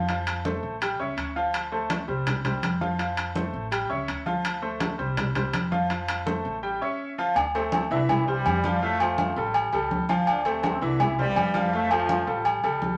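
Salsa at a brisk 165 BPM in D minor, this fiery, driving cut from a longer piece opens with a brilliant, up-front upright piano carrying the accompaniment over a woody, thumpy pizzicato upright bass with gut strings. Congas with a thin, medium-tuned skin and soft hands sound compressed and saturated, while ringing metal-shell timbales and agogo bells sit close and vintage, with a band-limited edge. The harmony cycles through F, A7, Dm7 and C chords, giving the groove a restless pull toward the minor home key. At 7.4 seconds a punchy, pop-style trombone section takes the melody, playing as an ensemble until 12.4 seconds. A wet studio reverb places the band in a lively room, and the piano's long sustain rings through the mix until 12.9 seconds, just before the passage breaks off at 13.0 seconds.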